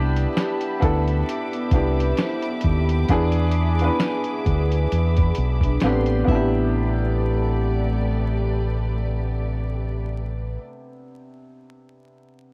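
At a slow 66 BPM with a lightly swung 4/4 pulse, this reflective, melancholic lo-fi hip hop piece in A minor sets a woody, slightly detuned upright piano through cassette tape over a round, punchy dub bass and muffled sampler drums with a thumpy kick and 12-bit grit. Close, lush bowed strings sustain chords, while a mellow soft-mallet vibraphone with tape echo and, from 6.3 s, a fingerpicked nylon-string guitar with finger squeak drift in the background, all wrapped in small-room ambience and vinyl crackle as the chords move from Cmaj7 through E7 to Am11.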